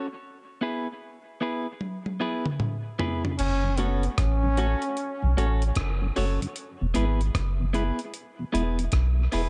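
A spacious, meditative dub reggae excerpt at 76 BPM in 4/4, with a swung sixteenth-note feel in F# minor. A clean, picked electric guitar opens alone, filtered and trailing dub echo over an E chord, before a dusty, sampler-style drum kit enters at 1.8 seconds with a fill across crash, hi-hat, toms, rim click and a thumpy kick. At 3.4 seconds the harmony moves to F# minor and a deep, round sub bass arrives up front, while a clear trombone with light vibrato and a smooth top plays a brief second line through 5.5 seconds, filtered and sent into dub echo. A mellow tonewheel organ sits in the background, lightly overdriven with chorus vibrato and a slow rotary speaker, and the chords return to E at 6.6 seconds. The production is dark and warm with light reverb, the gritty drums and bass sitting up front.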